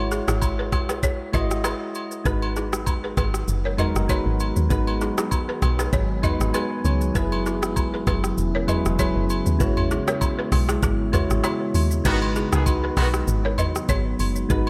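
A dreamy, reverb-soaked mix frames this smooth, mellow afrobeats excerpt at 98 BPM in G# minor, where a deep, round log drum bass and an electronic afro-pop kit with a knocking kick and smooth hats sit up front, while agogo bells and woodblock add light percussion. Soft, detuned electric-piano-like synth keys with chorus carry the chords and slip in a fill at 6.2 seconds, and a woody, buzzing balafon riff with analog delay threads through. A dark, full-bodied ambient pad enters at 3.1 seconds in the background, and a clear, tight horn section with light vibrato briefly plays a second line from 12.1 to 13.1 seconds.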